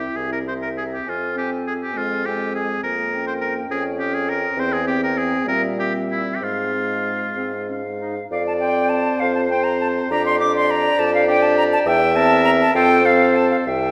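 Swaying in 6/8 at 62-70 BPM counted in dotted quarters, this quick classical-period movement for wind quintet moves with a rubato give, its lively, spirited character shaped by an elastic pulse. It opens in F minor and turns to F major at 8.3 s, with both halves built on the same opening material. The silver concert flute carries the melody high above the group with a pure, metallic tone, soft attack and vibrato, while the bright oboe sings a second line beneath it with light vibrato. The clear French horn and the distant, roomy clarinet fill in the accompaniment, and the bassoon anchors the bass up front with a warm, lightly vibrating tone. A recital hall reverb with a 1.8 s decay gives the ensemble a wet, resonant setting, and the fragment is cut from a longer piece, ending at 13.9 s.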